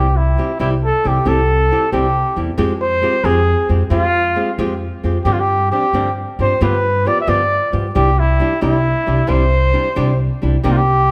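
Light reverb gives this short cut from a longer piece of mariachi-flavored Mexican folk a roomy sound, with the trumpet and bass set up front. A mellow trumpet carries the melody as the solo voice in a classical style, its tone shaded by a light vibrato. Beneath it, a flamenco guitar supplies acoustic, fingerpicked accompaniment, and its strings let out a finger squeak. A plucked upright bass with gut strings adds a woody, dark, thumpy low end. In a straight 6/8 feel, the harmony moves from C through Fmadd9 and a suspended G7 that resolves to G7, then comes to rest on Cadd9 around 7.9 seconds. The mood is romantic and festive.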